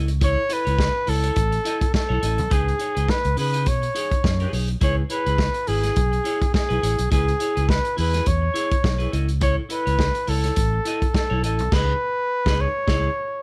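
Glamorous and sultry, this short disco excerpt moves at 104 BPM in C# minor with a gentle sixteenth-note swing. A breathy flugelhorn carries the melody up front, its soft attack, light vibrato and close-miked, whispered tone giving the line an intimate pop feel. Beneath it, a fingered electric bass sits forward in the mix with a dark, round, punchy amped sound, while a clean, picked semi-hollow guitar adds hollow-body accompaniment further back. The vintage drum kit has a lo-fi, muffled small-room character, with a punchy kick, medium-tuned snare, dark cymbals and a rolled-off top. The harmony drifts through Aadd9, B69 and C#m7 before the band hits an accent from 11.7 seconds, landing on C#m, all in a dry, close setting with little reverb.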